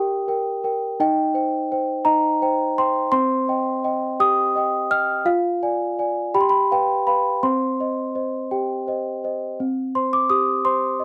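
Tender and innocent, this classical lullaby for solo celesta moves in a gentle 6/8 with a straight feel. The celesta plays alone for the whole 11 seconds, its bell-like, delicate and sweet tone shaped by medium felt hammers and spanning C4 to F6. Close-miked and up front, the instrument sounds dry and full, set in a room with light reverb. The harmony drifts through minor-key colours, passing from Cm to a Ddim/F and a G7 before settling back on Cm. After the opening section, a new section begins at 9.6 seconds, and the recording ends shortly after at 11 seconds, cut from a longer piece.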